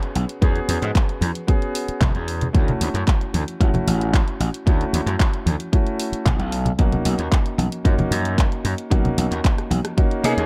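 A straight 4/4 groove at 113 BPM drives this short, feel-good nu-disco excerpt, built on a punchy, up-front electronic kick and a layered pop drum kit of handclaps, hi-hat and rim click, with bright congas sitting close yet in the background. A gritty, overdriven slap bass pushes to the front with sidechain pumping, while a warm grand piano with short sustain plays accompaniment through sidechain pumping and digital delay, moving over E69, Dmaj7 and Bmaj9. The production is dark and warm with a digital ambience, giving the groovy track a snug sheen.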